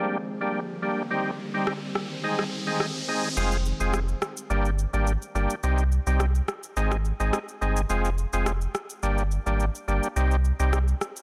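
An overdriven tonewheel organ sits up front in this short cut from a longer dancehall piece, its gritty, percussive chords thickened by chorus vibrato and softened by a low-pass filter. The mood is bouncy and hypnotic, moving through a minor-key cycle of Gm, Cm, Ab and Fm. At the start, an ethereal, airy pad holds detuned, wave-folded chords with a slow attack and built-in reverb, joined by an electronic riser running from 1.0 to 3.4 seconds. An electronic afro-pop drum kit enters at 1.7 seconds with crash cymbal, rim clicks and shaker. At 3.4 seconds the pad and riser fall away, the kick is muted, and a deep, round sine sub bass arrives up front with a fast attack and mellow sustain. Light digital ambience gives the production a dark, warm finish.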